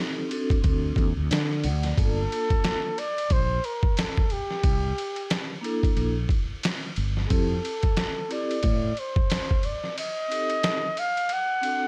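A swung sixteenth-note groove at 90 BPM in 4/4 carries this smoky, nocturnal jazz-hop cut in G minor, taken from a longer piece. The sampler-style trip hop kit sits up front, compressed, pitched down and muffled, with a thumpy kick, a medium-tuned snare, hi-hat and ride, all with a tape-warm, small-room character. A dark, round fretless electric bass, punchy and direct, anchors the low end until 8.9 seconds, while a metallic, ringing vibraphone with medium mallets and motor vibrato supplies the chords, moving from Am7b5 and D7 through a rootless Gm7, C13 and Fmaj9 before returning to Am7b5 and D7. At 2.0 seconds a breathy, close-miked flugelhorn takes the solo melody in jazz style, mellow and scooped, its vibrato trailed by a slapback echo. The kick drops out at 10.0 seconds, and a digital ambience surrounds the whole mix.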